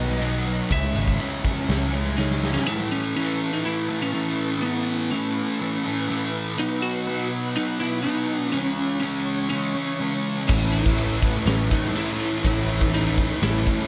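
A hazy, blissful shoegaze and dream pop excerpt opens with a slightly broken-up, compressed lead guitar melody carrying tape echo, mellow organ-like ensemble chords, a thick fuzz guitar riff with lush chorus, a biting overdriven guitar riff with reverse reverb, round foam-muted bass and an up-front arena drum kit with a punchy kick; after a drum fill at 2.2 seconds the drums, bass and biting guitar fall away while the fuzz, lead and organ continue, then they return at 10.5 seconds, joined by a jingly tambourine in the background from 11.0 seconds.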